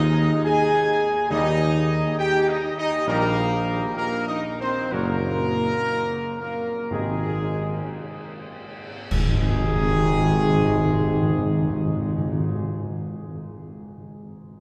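Classical ceremonial fanfare, majestic and solemn, cut from a longer piece, in which a dark trumpet section with a soft attack carries the melody over clear French horn chords with light vibrato and an up-front, close-miked tuba bass. At 1.3 s a very quiet, distant trombone section adds sustained chords as round timpani on soft mallets join, and from 4.9 s a cymbal swell, clash cymbals and concert bass drum enter, with a band accent arriving at 9.1 s. The pace slows through the opening section, and a cathedral reverb wraps the ensemble in a vast, wet halo.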